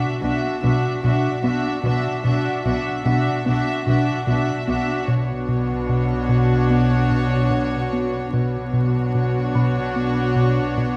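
Cinematic suspense film score, mysterious and tense, where a rubbery, hollow square-wave bass riff with a bouncy filter pluck sits beneath soft-attack, sul tasto string sections: a floating, distant violin melody, a dark second violin line with vibrato, a smooth viola accompaniment, and intimate cellos and rich double basses entering together at 0.2 s, while a worn, slightly out-of-tune celesta adds a delicate, bell-like texture in the background from 3.1 s, over a Dadd9/B chord in a wet scoring-stage reverb flecked with vinyl crackle.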